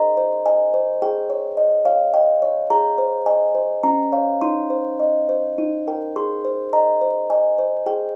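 In a straight 3/4 at 106 BPM, this dreamy, tender classical lullaby in Ab major, tuned to A4 = 439 Hz, features a solo music box that plays up front for the full 8.2 seconds, spanning Db4 to C6. Its tinkling, plucked tone is mellow and dark, with a slightly out-of-tune charm, and it moves through a simple progression that settles back on Ab at 6.2 seconds. The rough home-demo sound adds vinyl crackle, small-room ambience and moderate reverb to this brief passage cut from a longer piece.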